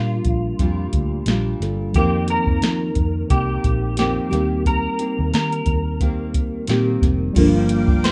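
An up-front vintage rhythm box with a deep kick, crisp snare and metallic hats enters at 0.2 s, driving this hazy, nostalgic bedroom-pop excerpt at 89 BPM in Bb major, where a slightly broken-up, lo-fi electric guitar carries the melody through chorus, plate reverb and delay over fingerpicked, full-bodied nylon-string guitar with chorus and vibrato, a mellow tine electric piano in the background and a round, punchy foam-muted bass, before a lush, detuned sawtooth unison pad arrives at 7.4 s on a Gm7 chord, all within a rough home-demo mix.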